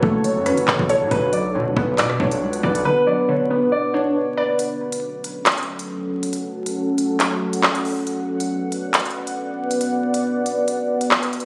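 Menacing, cold hip hop drill, cut from a longer piece, runs at 138 BPM in a half-time feel in F# minor, moving between F#m and Bm. A dark, woody upright piano carries the melody with delay over a warbling, dusty lo-fi pluck treated with chorus and phaser, a deep, moody ambient pad holding chorused chords, and a saturated, aggressive 808-style bass that stops at 2.8 seconds. The drill kit's knocking kick, crisp hats, handclaps and rim clicks sit up front, drop out briefly, and return at 4.6 seconds when piano and pluck end, leaving pad and kit for a break inside a lush hall reverb with vinyl crackle and a phone-in-the-room quality.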